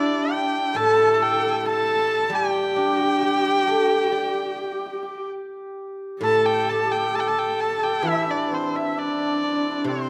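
Closely miked with light reverb, this short excerpt of pastoral, graceful Chinese chamber music drifts freely around 66 BPM in the G zhi mode, where an up-front erhu, biting with portamento and light vibrato, carries the melody over a shimmering hammered dulcimer and a husky horsehead fiddle on second lines, while a mellow, silvery guzheng enters at 0.7 seconds before the music turns to a new section at 6.2 seconds.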